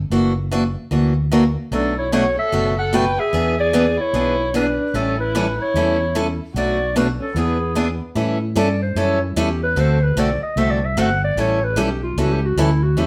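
A round, punchy fretless electric bass and a bright, boxy picked parlour acoustic guitar open this lively, charming excerpt of acoustic string swing, sitting up front with a lilting swung feel. At 1.7 seconds a raspy, growling clarinet with light vibrato and scooped notes takes the melody, joined by a dark, woody bowed violin on a quieter second line. The violin drops out at 8.0 seconds, leaving the gritty, vintage-toned clarinet to solo over the band, all captured live in one room with a generous reverb.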